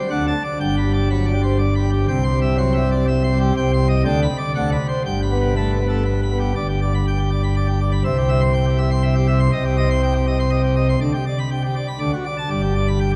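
Heard through vinyl crackle, a vast, echoing cathedral space lets each chord of this jubilant baroque-style organ toccata hang in a long, wet reverb. A solo pipe organ on full plenum, its mixtures bright and its pipes speaking with a crisp chiff, sits up front and spans from a deep G1 to a ringing C6 in a three-beat metre. Across two matching passages in this short cut from a longer piece, the harmony moves from C major into a darkening C minor before resolving home to G.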